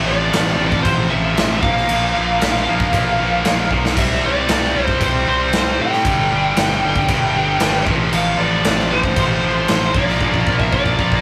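Hard rock at 115 BPM in a straight 4/4, swaggering and powerful, with a dark, high-gain lead guitar carrying the melody over two bright, double-tracked rhythm guitars, one scooped, riffing in the background, and a growly fuzz bass. A big acoustic rock kit with a punchy kick and bright cymbals sits up front, entering at 0.3 s and playing fills at 3.7 s and from 10.2 s to the cut. The chords move through F/A, Bb5, C5 and G5, and the rough rehearsal-room sound carries tube saturation and moderate reverb.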